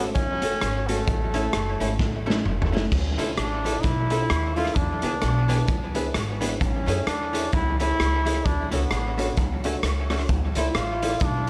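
A bright, distant trombone carries the melody from the opening of this cheerful, bouncy ska excerpt, over woody pizzicato upright bass on gut strings, a boxy, mellow upright piano playing stabs and a clean, compressed hollow-body archtop guitar set in the background, all but the bass touched by tape echo. An up-front, gritty garage drum kit with a punchy kick and a rolled-off top joins almost at once, its fill from 2.0 to 2.9 seconds leading out of the opening F#m and A changes into a Dmadd9, E7, Amaj7 and Dmaj7 passage. The swung eighths give the whole a loose lilt, and the guitar falls away at 11.1 seconds while the other parts carry on to the end.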